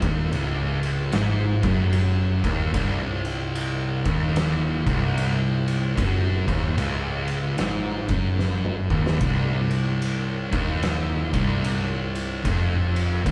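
Stoner and doom metal at 74 BPM with a swung 4/4 lilt, this heavy, brooding excerpt from a longer piece sits on C minor as two thick fuzz guitars grind out a low riff, one up front and distorted, the other darker and set back in the mix. A hollow-body short-scale electric bass adds a round, overdriven bottom in the background, while an oversized low-tuned drum kit, acoustic and gritty with a fat snare, punchy kick, ride cymbal and toms, sits up front and breaks into a fill from 8.4 to 9.2 seconds. The band plays live in one room, wrapped in a moderate stone room reverb.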